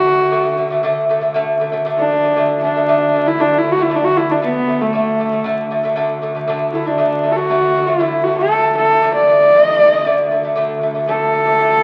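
A straight 4/4 pulse at 117 BPM carries this short Mongolian folk passage in a D gong mode, cut from a longer piece and lasting about 11.8 seconds. Up front, the horsehead fiddle leads the melody from the first moment, touching D5 at 0.0 seconds, its bowed horsehair tone nasal, husky and biting, with light vibrato and portamento. Beside it, a fingerpicked lute on nylon double strings spins bright, delicate arpeggios in its lower range. A bowed double bass holds a low D drone, focused and close, with its own vibrato sitting quietly beneath the other two. The trio sounds through a moderate large-studio reverb and the crackle of a very old 78 rpm record, giving the music a vast, proud character.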